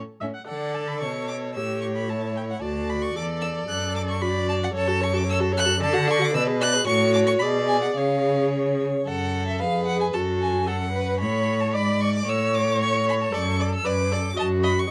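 Spirited and cheerful, this quick classical-period movement for string quartet moves at 113 BPM in 2/4 with a straight feel. It begins in D major and turns to F# minor at 4.7 s. From 0.5 s the first violin carries the melody high above the ensemble, its bowed tone smooth and even with vibrato. The second violin plays a focused inner line, while the viola supplies expressive accompaniment with vibrato and portamento. The cello holds the bass up front with a rich, soft-attacked sound and its own sliding portamento. A moderate studio reverb gives the quartet a sense of space, and this passage, cut from a longer piece, settles into F# minor before closing on a B5/F# chord.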